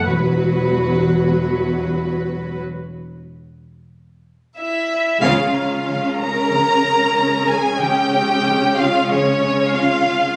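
Captured on a phone in a reverberant, compressed room, this uneasy, mysterious suspense film cue at 93 BPM in 4/4 puts a lush, vibrato-rich violin section up front on the melody over focused bowed violas, a clear, close double bass section and a soft-attacked, gliding cello section in the background, with a delicate, tinkling vintage music box glinting faintly at the start and again midway, a second violin line joining at 4.6 seconds, and, after a break, an ensemble accent at 5.2 seconds bringing a smooth cello riff as the harmony moves from Esus2 to C#.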